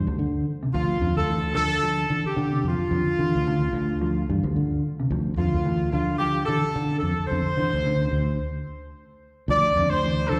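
Driving and intense, this afrobeat excerpt moves with a gently swung sixteenth-note feel in 4/4. A dark, mellow electric guitar plays clean, fingered arpeggios in the background, coloured by a subtle chorus. Up front, a round, amped fingered electric bass gives the groove a dark, direct footing. From 0.7 seconds, a tight, close-miked horn section carries the melody in a pop style with light vibrato, thickened by slapback echo and analog delay. The band halts in a stop at 8.4 seconds, and the harmony moves from Dmadd9 to Dm9 at 9.5 seconds. The sound is of a live gig heard through the venue's PA, with small-room ambience and the light reverb of a recital hall.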